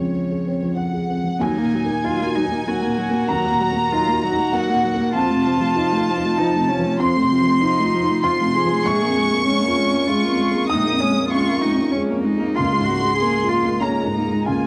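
Fragile and longing, this neoclassical fragment for piano and strings drifts in a rubato 3/4 at 96 BPM in Eb dorian, where a felt-muted upright piano sounds dark, boxy and up front with audible action noise beneath a close, sul tasto violin section carrying the melody through a cassette-tape haze, a soft-attacked solo cello shading a second line, and a solo viola with an airy bow joining the accompaniment at 1.4 s, all set in light reverb and studio ambience over chords moving from Dbmaj7 through Ebm, F7 and Bbm7 to Db6.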